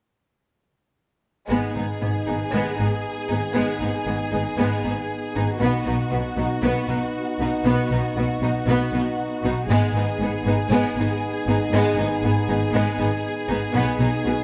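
At 1.5 seconds a full string orchestra and a French horn section enter together in this dark, epic cinematic passage in G# minor, moving at 118 BPM in a straight 4/4 as a build-up cut from a longer piece. A focused violin section carries the melody, bowed with vibrato, while a second, smoother violin section sits distant in the background with its own lush supporting line. Beneath them, violas hold an even accompaniment, and a mellow horn section with light vibrato and a vintage, classical character sustains chords through the middle of the texture. Cellos and woody-toned double basses anchor the bass together, the cellos sounding rich yet set back in the mix, as the harmony alternates between G# minor and B major. A moderate scoring-stage reverb gives the ensemble a spacious, cinematic depth until the parts stop around 14.4 seconds.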